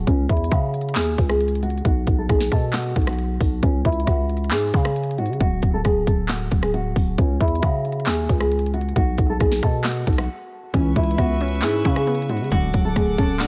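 A dark, thumb-plucked nylon-string guitar melody under a filter sweep opens this melancholic, hard-hitting half-time trap excerpt alongside a growling, buzzy 808 bass and an up-front electronic kit of hard-clipped kick, sharp snare, crisp hats, rim clicks and handclaps, and after a brief break a detuned, lo-fi warbling pluck and a reedy, gut-string chamber section enter together at 10.7 seconds with the shift from minor triads and power chords to seventh chords, all set in digital ambience.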